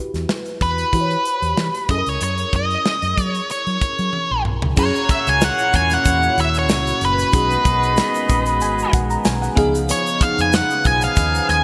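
A swung 94 BPM groove in 4/4 drives this glossy, urban slice of polished 1980s jazz-funk pop, where a sparkling FM electric piano with lush chorus, a round foam-muted fingered bass and a tight modern drum kit set the pace before a dark, up-front octave-fuzz lead guitar takes the melody at 0.6 s, a drum fill at 4.1 s ushers in a vintage horn section with delay, a shimmering pulse-width pad and a grainy background shaker at 4.8 s, and an electric piano fill at 8.0 s rides over chords moving from Emadd9 through F#7 and B6 to C#9, all bathed in a lush hall reverb and bright digital sheen.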